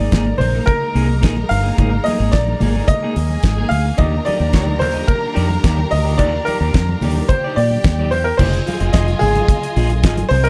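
A bright, brilliant baby grand piano carries the melody up front in this driving, sultry disco excerpt at 109 BPM in F dorian, moving from Absus2 to Ebmaj7 and landing on Fm7 at 8.4 s. A lush bowed string section plays a smooth second line while a very quiet string ensemble holds sustained chords until 8.3 s, and a dark, clean picked electric guitar fills in accompaniment. Underneath, a fingered electric bass with a foam-muted, amped tone and a damped 70s drum kit with a fat snare, tight kick and dark cymbals sit forward in a dry mix, with thin-skinned congas in the background.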